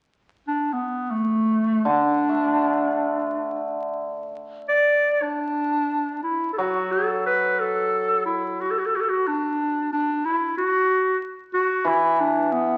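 A close-miked clarinet opens at 0.5 s with a forceful, punchy, vibrato-laden solo in a jazz-tinged style, carrying the melody of this festive yet pastoral Chinese traditional chamber piece in free time and D gong mode, before a bright, shimmering hammered dulcimer joins at 1.9 s with ringing low accompaniment, both parts up front in a reverberant recital hall and heard through the crackle of a very old 78 rpm record, with the music moving into a new section at 6.6 s.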